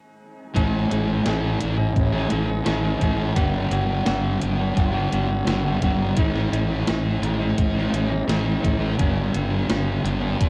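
A lo-fi cassette home recording with a dry, hazy sound opens this wistful excerpt of shoegaze-leaning dream pop rock, moving at 85 BPM in A mixolydian as the harmony alternates between A and G. A thick fuzz guitar sits up front playing a riff beside an overdriven semi-hollow guitar whose hollow-body tone is smeared with reverse reverb, while a fuzzed, fingered electric bass, also up front, anchors the low end. A crisp 8-bit drum machine with a thumpy kick and medium-tuned snare, overdriven and re-recorded in a small room, enters at 0.6 s and drives the piece to the cut at 10.5 s.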